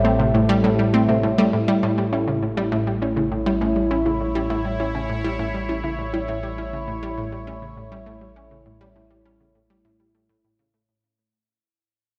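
Opening together on an Am7 chord, a bright, evolving pad with chorus and phaser sustains up front over a detuned sawtooth analog pluck riff with tape echo, a lush, warbling unison pluck arpeggio that sits in the background until 6.3 s, and a deep, mellow analog bass holding A1, as this hypnotic, cosmic slice of sequencer-driven ambient space music at 101 BPM in 4/4 shifts to A at 1.5 s and fades out through 11.0 s inside a wet plate reverb and a dark, warm production.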